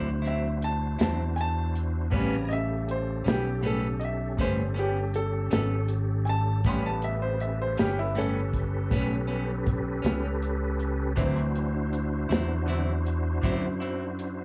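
A bright, woody upright piano takes the lead in this laid-back yet rollicking slow blues excerpt at 53 BPM in 12/8, moving from D9 to A9 over a clean, picked electric guitar with harmonic tremolo, sustained tonewheel organ chords with key click and fast rotary swirl, a round, up-front fingered bass and a dark, smooth soul drum kit, all colored by the warbling pitch drift of worn cassette tape, with the piano dropping out at 11.7 seconds.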